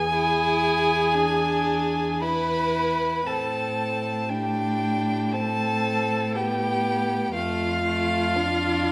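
Opening on an E chord, a warmly vibrant violin sings a yearning melody up front in a slow, rubato A minor string quartet passage at 56-61 BPM, over a distant, smooth viola accompaniment, an intimate cello bass with soft attack and airy bow, and a rich second violin line entering at 0.1 s, as the harmony moves to Am at 3.3 s and F at 7.3 s within a reverberant recital hall, yielding an elegiac fragment cut from a longer piece.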